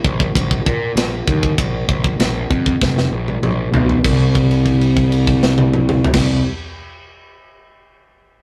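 A rough rehearsal-room sound with tube saturation and light reverb frames this short heavy metal fragment, cut from a longer piece. Its mood is epic and heavy, in a straight 4/4. A fuzz-drenched picked electric bass sits up front, its bright, growly overdrive carrying the low end from the very start. Alongside it, an acoustic metal drum kit with a tight kick, medium-tuned snare, toms, crash and ride has a mid-forward, rolled-off top and a studio-room feel. A drum fill arrives at 2.8 seconds and leads into a new section at 4.0 seconds, where a held note rings until 6.1 seconds.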